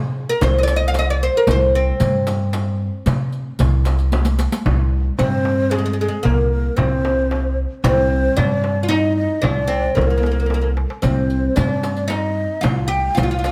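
Set in a straight three-beat metre, this Arabic maqam ensemble piece, cut from a longer work, carries a longing, soulful mood. A bright, fretless oud plucked with a plectrum leads the melody up front, its double strings giving it a woody ring, while a pizzicato upright bass on gut strings sits equally forward with a thumpy, warm tone. Percussion enters just after the start: a crisp, metal-shelled darbuka kept close and dry in the background, a small frame drum struck with hard hands in a live room, and a riq whose dark, compressed, saturated jingles drop out for the middle stretch and return at 11.0 seconds. After a drum fill at 4.1 seconds the second section opens, and a breathy, end-blown reed-cane ney joins at 5.2 seconds as a second line, tongued and expressive with vibrato. Light reverb gives the ensemble a soft sense of space.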